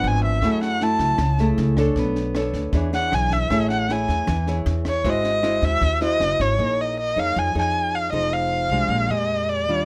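A rich, bowed erhu sits up front and carries the melody with expressive vibrato, portamento and a soft attack, taking a solo through the first 6.6 seconds of this intimate, wistful bossa nova excerpt at 156 BPM. Close beside it, a small, fingerpicked nylon-string guitar moves through jazzy chords such as F#m9, Amaj7 and G#7b13, while a woody pizzicato upright bass anchors the low end. A compact cocktail drum kit with a dark, smooth tone, a high-tuned snare, rim clicks and a tight kick plays from 0.4 to 6.4 seconds before the music shifts into Bb minor, all in a dry, detailed and closely miked sound.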